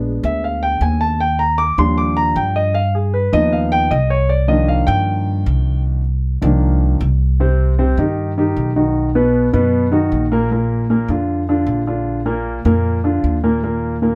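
A moderate studio reverb surrounds an up-front duo in this fiery, sophisticated fragment of Afro-Cuban jazz, cut from a longer piece. A warm grand piano takes a solo through the first 7.4 seconds over rich chords such as Bb7b9, Ebmaj9 and Cm11, while a woody, pizzicato upright bass with steel strings holds the low end throughout. At 7.4 seconds a new section turns to plainer harmony, moving through Cm, B and Bb before settling on Eb5.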